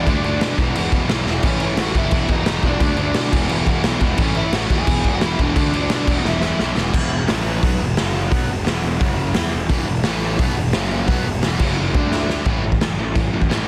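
Opening at once on a hollow-body overdriven lead guitar with tape echo, set over a sludgy picked riff and a tight, bright distorted one, this upbeat, rowdy punk rock cut from a longer piece adds a growly fuzz bass and an up-front, punchy garage drum kit with a gritty stone-room sound and several fills, the lead falling away at 6.8 s and the sludgy guitar resting until 9.7 s, inside a dense, heavily limited master.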